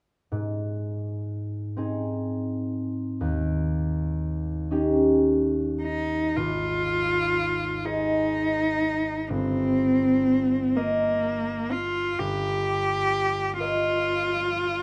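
A concert harp opens the recording at 0.3 s, its thumb-plucked, ringing chords spanning a deep low register up into the treble as it establishes a serene, lyrical mood in A-flat major. This is a romantic classical duo in a slow, rubato 6/8, moving at roughly 34-43 beats per minute counted in dotted quarters. At 5.8 s a single bowed cello enters up front with the melody, its tone clear and focused with a smooth top and vibrato, sitting a little louder than the harp. The harmony moves between A-flat and E-flat seventh chords, with the second phrase touching on inversions over G beneath the singing cello line. Both instruments play on to the close of this passage, cut from a longer piece, in a large studio with a moderate reverb that lets the harp's acoustic resonance bloom.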